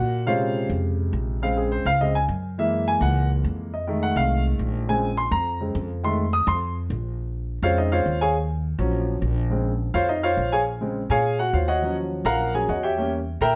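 Set in straight 4/4 at 208 BPM in Bb minor, this sultry, sophisticated Afro-Cuban jazz passage, cut from a longer piece, features an up-front grand piano with a natural, warm tone soloing across the full 13.6 seconds over harmonies like Bbm9, Gb7, F7#9 and Ebm9, closing on Edim7, while a woody, dark, thumpy pizzicato upright bass on gut strings anchors the low end, all set in a moderate large-studio reverb.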